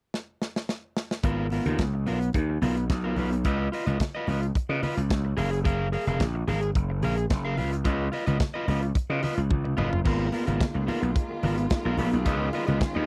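Sultry and danceable, this short disco excerpt opens with a drum fill on a tight, up-front kit before a growly, overdriven slap bass, a twangy electric guitar at the edge of break-up and very quiet, damped congas join at 1.2 seconds over dry, close 1970s-style production, with a lush, bowed string section arriving in the background at 10.1 seconds.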